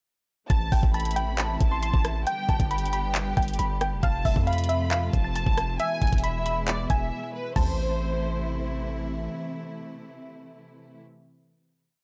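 Trap hip hop at 136 BPM in a half-time 4/4 feel, eerie and brooding in A minor, where a warbly, dusty pluck loops a dark melody through chorus, low-pass filtering and analog delay, a lush studio violin section adds a sparse counter-melody, a clear symphonic string section holds sustained chords through the final chord that rings until 11.0 s, a hard-hitting 808-style bass slides between long sub notes, and a knocking trap kit brings bright hats, fast hi-hat rolls, handclaps, rim clicks, toms and crash, with a brief break arriving at 7.1 s, all captured as a dry, gritty cassette-tape recording.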